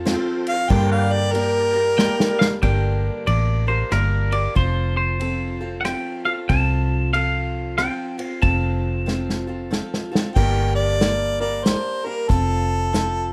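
This dusty, lonesome honky-tonk and classic country fragment in G minor opens in a swinging 3/4 at 93 BPM. A boxy picked acoustic guitar, a round, foam-muted electric bass and brief sustained chords from a fingerpicked pedal steel come first, while a lightly overdriven tonewheel organ with slow rotary speaker and chorus vibrato sits in the background. A close-miked harmonica soon takes a jazz-style solo, clear-toned with light vibrato and scooped notes. From 2.6 seconds a twangy, compressed electric guitar with tape echo carries a clean solo over an airy acoustic drum kit played with bundle sticks, its punchy kick and medium-tuned snare up front, with drum fills leading into and out of the guitar's turn. The harmony moves between G minor and F, and the harmonica returns at 10.3 seconds to carry the melody through the close, all within a dark production touched with light reverb.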